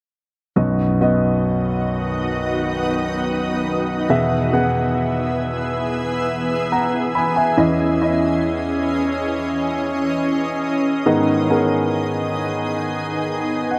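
Set in the wet bloom of a large scoring stage, this hopeful, heartfelt pop passage at 68 BPM in B major is cut from a longer piece. An intimate concert grand piano enters at 0.6 s as accompaniment, up front with deep bass, long sustain and audible action noise. At 1.3 s a bright, ethereal pad joins with sustained chords that have an octave-up shimmer, detuned unison, granular texture and chorus, moving through B, E, C#madd9/E and G#m.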